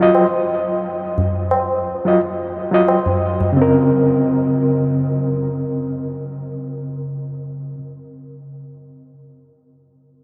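Bathed in a huge, dreamy ambient reverb, this hypnotic, brooding trip hop excerpt at 88 BPM in Bb minor, with a light 16th-note swing, puts a gritty, reedy overdriven electric piano up front through a combo amp with tremolo and tape echo, moving from Ebmadd9 to Bbmadd9 at 3.5 s, while a low-tuned, ringing acoustic tabla sounds from a distant large room until that same point.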